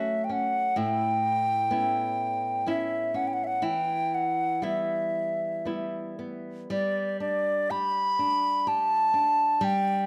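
A mournful, haunting Celtic slow air in 3/4 opens with a wooden baroque flute carrying the melody up front, its airy, bright, straight tone and crisp attack set above a fingerpicked flamenco guitar with fresh strings that sits lower in the mix. The rubato pulse hovers around 55-65 BPM as the harmony moves from F#m through Aadd9 and Em, reaching G at 6.7 s. Close, detailed microphones capture both instruments in a moderate recital hall reverb, in this short passage cut from a longer piece.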